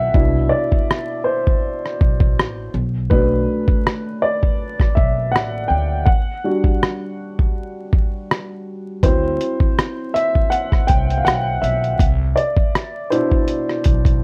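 A gently swung 4/4 groove from a compressed, pitched-down sampler-style kit sets the pace, with a muffled, thumpy kick, hi-hat and rim click carrying vintage 12-bit grit up front. In this reflective, nostalgic lo-fi hip hop excerpt, a dark, mellow upright piano takes the solo from 0.0 s through 14.2 s, its smooth, low-pass-filtered voicings moving through Cmaj7, Bm7, Dadd11/G and a rootless D7. A woody, gut-strung pizzicato upright bass sits beneath, and the whole mix is wrapped in light reverb, vinyl crackle and the warbly pitch drift of worn cassette tape.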